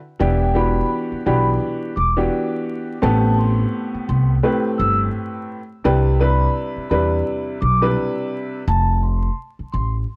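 At 0.2 seconds, a cut from a longer boom-bap hip-hop piece opens with upright piano, upright bass and vibraphone together over an Em7 chord, setting a gritty, dark mood at 85 BPM in 4/4 with a swung sixteenth-note feel in E minor. The piano sits up front as accompaniment, its woody, intimate tone carrying audible action noise and a cassette-tape coloring, filtered at both ends of its range. The pizzicato upright bass is also up front, its steel strings giving a dark, woody acoustic sound low in the register. High above, the soft-mallet vibraphone carries the melody with a metallic, ringing yet mellow and airy tone shaped by slow motor vibrato, also filtered top and bottom. The harmony moves through Am7 and Cmaj9 before landing on F, and the piano drops out at 8.6 seconds while the bass holds on to 10.0 seconds. The whole take has a dry, small-room hardware sound with transformer saturation and a bed of vinyl crackle.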